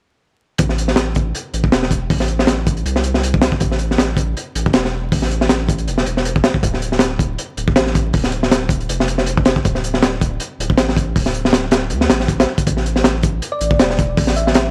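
A crunchy breakbeat drum kit drives this dark, raw drum and bass and jungle excerpt at 159 BPM in 4/4, with a 55% swing on the sixteenths giving the hi-hat, tight kick and high-tuned snare a loose push. The kit sits up front with a gritty, saturated character and a rolled-off top, while a deep, thick sine sub bass with tube saturation holds sustained low notes between D1 and D2 beneath it, both running from 0.6 to 14.7 seconds. The harmony in A minor moves from A5 to D5 at 6.6 seconds and back to A5 at 12.7 seconds. Near the close, a round, tine-like FM pluck resembling a thumb piano appears briefly from 13.5 to 14.5 seconds, its gentle, decaying notes between D5 and E5 carrying a subtle chorus and dub echo. The whole track has a dry, small-room sound from a hardware recording, roughened by transformer saturation and a layer of vinyl crackle.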